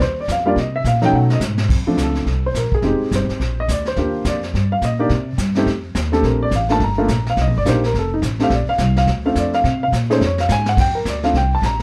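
A dark, mellow baby grand piano begins this sophisticated jazz trio excerpt in Bb major at a brisk, swinging 212 BPM, joined from the first moment by a woody pizzicato upright bass sitting up front and a vintage brush kit offering dark cymbals, a high-tuned snare, a punchy kick and a rolled-off top. After a drum fill at 1.1 seconds, the intimate piano, its action noise audible and its notes short in sustain, takes a solo from 1.7 seconds over chords such as Bbmaj9, Fm9, Ebmaj7, F7 and Gm7. A second brushed fill arrives at 10.2 seconds, and a small room's moderate reverb gives the whole trio a warm sound.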